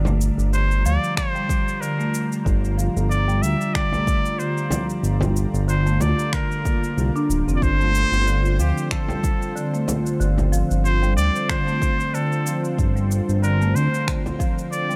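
A lightly swung 4/4 groove at 93 BPM sets the pace for this hypnotic, warm piece of organic downtempo in G minor, heard in a 15-second cut from a longer piece. A deep, hard-handed frame drum plays from the start alongside layered electronic cabasa and finger snaps, and a deep electronic kick joins at 1.2 seconds, all sitting in a small room ambience. Beneath them, a smooth, saturated synth bass with fast attack and vibrato sits up front, while a marimba with medium mallets plays woody, vintage-toned arpeggios through a delay. A detuned sawtooth analog pad holds soft-edged chords with chorus and sidechain pumping. From 0.5 seconds a trumpet with a straight mute carries the solo melody, nasal and bright, with scooped notes, vibrato and a jazz inflection, its line echoing through a delay. The harmony moves from Gm7 to Dm7/G at 7.6 seconds.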